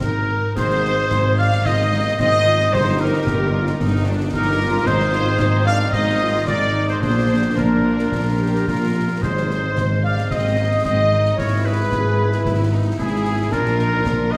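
Cinematic heroic adventure film score, adventurous and soaring, this passage cut from a longer piece is led by a clear trumpet section whose stabs sit on top of a lush orchestra: a violin section carries the melody with vibrato and a smooth top, while a clear oboe, a bright, vintage-toned clarinet and a second, very quiet violin line add second lines, over a dark viola section with portamento. Woody double basses, a mellow tuba and a close cello section (entering at 0.6 seconds) anchor the bass, a distant, very quiet French horn section holds sustained chords, and concert snare, bass drum and bright clash cymbals drive the straight pulse, with round, soft-mallet timpani strokes arriving at 4.9 and 9.2 seconds. A wet concert hall reverb gives the whole ensemble a spacious, roomy sound.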